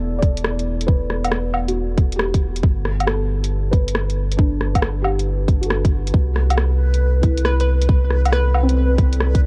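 Swung sixteenths drive this rainy, melancholic future garage excerpt, where a tight, up-front electronic kick and a layered garage kit of hi-hat, rim click and woodblock sit beneath a round sine sub bass with tube saturation, a felt-muted upright piano with audible action noise, gritty 12-bit sampler texture and tape echo, and a dark, detuned ambient pad set in the background with chorus and reverb, these three sidechain-pumping through Em9, Gmaj9 and Cmaj9, before a reversed, dreamy granular texture appears at 6.8 seconds and a hollow, bright square-wave pluck adds a brief melody at 7.5 seconds.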